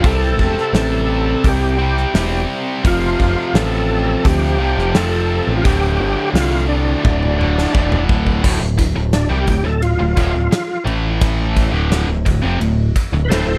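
A dry, close-sounding cut from a longer classic rock piece, gritty and swaggering in a straight 4/4. A thick, overdriven tonewheel organ with slow rotary speaker and chorus vibrato carries the melody over a tight, double-tracked distorted guitar riff, a growling picked electric bass with overdrive, and an up-front gated 80s drum kit with a fat snare and bright cymbals. After a drum fill at 7.0 seconds, the organ takes a solo from 8.4 seconds to the end.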